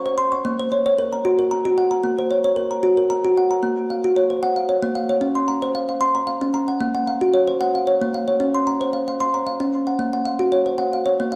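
A solo kalimba carries this short, meditative world piece, its woody, thumb-plucked notes sitting up front in the mix. The instrument is a solid-board type with a short, plucked tone, and it covers a span from Bb3 up to Db6 in a gentle three-beat lilt with a straight feel. A diffuse ambient delay trails each note, and the whole performance floats in the wet reverb of a recital hall, giving the dark production a roomy, enveloping quality. Built on a hirajoshi scale, the harmony alternates between Bbm and Db, with the second section beginning around 3.6 seconds. Cut from a longer piece, the passage runs to 11.4 seconds and keeps a calm, contemplative mood throughout.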